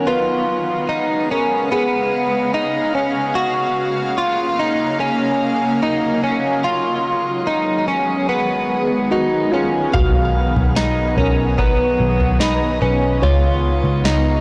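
In a straight, unhurried 4/4, this blissful, dreamy dream pop passage, cut from a longer piece, opens on a shimmering, warbling ambient pad and a bright, compressed clean electric guitar playing up-front arpeggios with chorus and delay, while a felt-muted upright piano adds soft, intimate melody with audible action noise. At 9.9 seconds a booming analog drum machine with a deep kick and crisp snare enters alongside a round, foam-muted electric bass and a delicate, bell-like celesta tucked in the background. The blown-out, overdriven recording sits in a moderate shimmer reverb that lends the whole a hazy glow.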